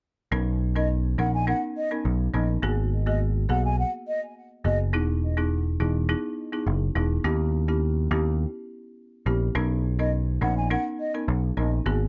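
An overdriven, round electric bass sits dark and up front beneath a woody, rustic folk marimba in this sultry, mellow afrobeats excerpt, while an airy, hollow concert flute with vibrato, plate reverb and digital delay floats in at 0.8 seconds and returns at 10.0 seconds over rich chords moving from Bmaj9 through G#m9, Emaj7 and D#7b9b13 back to Bmaj9.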